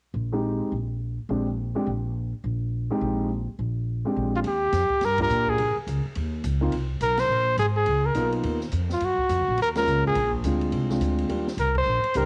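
Swinging and playful, this small-group jazz excerpt opens with a woody, growly pizzicato upright bass and an intimate grand piano with audible action noise, both up front over chords moving between Bb13sus4 and Bb13. At 4.4 seconds a mellow, punchy trumpet takes the forceful solo melody with scooped notes and a smooth top. An open drum kit joins at the same moment with dark cymbals, a high-tuned snare, a boomy kick, hi-hat and ride, and the band hits a string of accents. The piano and trumpet carry a cassette-tape colour, the drums have a gritty 12-bit sampler edge, and a moderate spring reverb places the group in a small room.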